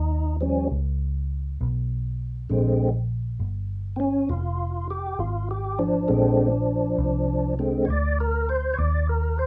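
A lightly overdriven tonewheel organ with key click, slow rotary speaker and chorus vibrato holds fat sustained Eb9 and Bb9 chords up front over a round, foam-muted electric bass in this gritty, laid-back slow blues excerpt in 12/8 at 67 BPM, heard as a rough home demo with small room ambience.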